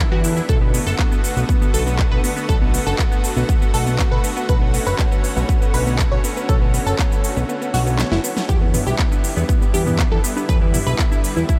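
Emotional and expansive, this progressive house excerpt moves at 120 BPM in a straight 4/4, cut from a longer piece and resting on Bm7 before shifting to Em7 at 8.5 seconds. A lush unison pad holds bright, detuned sawtooth chords with a slow attack and long release, while a tight sequenced synth drives nasal, filter-plucked arpeggios coloured by chorus, tape echo and a vintage 12-bit sampler grit. Underneath, a fat analog bass carries a saturated, evolving sawtooth-and-square tone, and the pad, synth and bass all breathe with sidechain pumping. A big-room dance kit of huge snare, crisp hats, handclaps and shaker comes in at 0.2 seconds, joined at 0.5 seconds by a punchy, up-front electronic kick. The kick drops out around 7.5 seconds for a drum fill, after which background electronic toms and congas join at 8.7 seconds, all set in light reverb.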